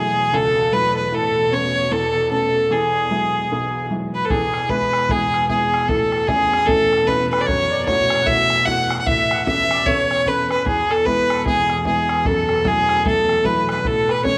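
A clear, focused fiddle leads a rollicking, cheerful Celtic hornpipe in E major at 151 BPM with a swung feel, joined from the start by a reedy background accordion playing a second line in the same range, a worn, woody upright piano with audible action noise, and a lush, bowed string drone, before a boomy bodhran enters at 4.3 seconds, all set in light small-room reverb in this excerpt from a longer piece.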